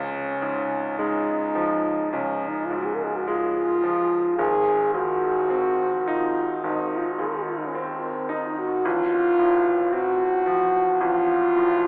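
The recording has a narrow, telephone-like tone set inside a very wet cathedral reverb with a 6.4-second decay, as if heard from within a church or concert hall. This brief fragment of a longer romantic classical duo feels tender and serene, moving slowly in four with a flexible rubato. A French horn carries the melody up front in a solo, classical style, its tone warm with a smooth top. A concert grand piano, also up front, accompanies with a bright, brilliant sound and deep bass, sitting somewhat beneath the horn. Both instruments play throughout the full 11.9 seconds, with the harmony passing from Db to Ab7 and then to F/A.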